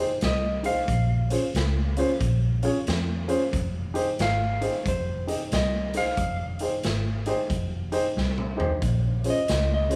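A swung 4/4 shuffle at 91 BPM drives this soulful, mournful electric blues excerpt in F minor, moving from Fm9 to Bbm9 and closing on Bbm7. A clean lap steel carries the slide melody over a dark, intimate baby grand piano with audible action noise. A round, foam-muted fingered bass and a gritty, saturated garage kit with a punchy kick join at 0.2 seconds, and the drums break into a fill at 8.2 seconds, with the band heard live together in one room within a moderate large studio reverb.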